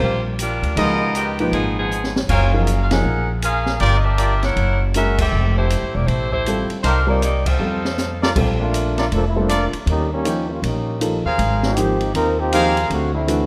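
Brassy and energetic, this big band swing excerpt opens with a bright, tight saxophone section carrying the melody over woody, thumpy pizzicato upright bass, an intimate baby grand piano with audible action noise, and an open drum kit with dark cymbals, a high-tuned snare and a boomy kick. A clear trumpet section with a soft attack and light vibrato adds stabs, while band accents and drum fills punctuate the swing. At 8.4 seconds a trombone section takes an up-front solo in jazz style, all within a natural studio room touched by light reverb.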